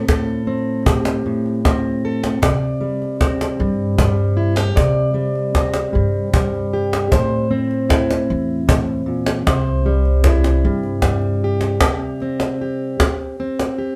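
Set in an unhurried 6/8 with a straight pulse, this gentle, pastoral acoustic folk passage is cut from a longer piece and played by a small band. A fingerpicked, plugged-in steel-string jumbo guitar carries the accompaniment throughout, its tone dark and full-bodied and placed up front. A cajon, also close, adds a woody beat with faint snares and a small-room character. At 2.4 s an upright bass joins, plucked pizzicato on steel strings, and it holds the low end until 11.8 s. The harmony drifts between Am7 and C-based chords, then settles on a bare C5 as a brief closing section begins at 11.8 s. A wet studio reverb places the ensemble a little further back in the room, lending the quiet scene some airy depth.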